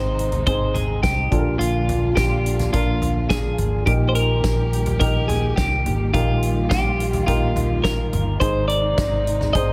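A straight 4/4 pulse at 106 BPM drives this short excerpt of anthemic, uplifting piano-driven pop, with a natural country drum kit of hi-hat, punchy kick, fat snare and toms entering at 0.2 s. Beneath it, a vintage muted fingered electric bass sits low and round, its foam-muted, amped tone giving the groove a dark weight. A woody upright piano with long sustain carries the accompaniment, while a lush studio string section holds bowed chords with expressive vibrato and a smooth top. Up front, a bright, twangy twelve-string electric guitar plays the melody with a clean, compressed sound and a touch of spring reverb. The harmony moves from Ab to Bb, settles on Eb at 3.9 s and returns to Ab, all set in the natural air of a small room.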